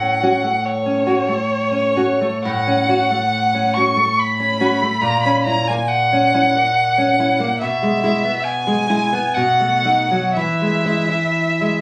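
Romantic violin and classical guitar duo in a serene, unhurried 3/4 at 59-73 BPM with a rubato feel: a single bowed violin sings the melody up front with vibrato, expressive portamento and a smooth top, while a full-bodied, fingerpicked nylon-string guitar accompanies with deep classical tone and audible finger squeak, the harmony moving from F#m/A through F#7/A# and B7 to settle on E at 10.4 seconds, all in a phone recording of the room touched by light reverb.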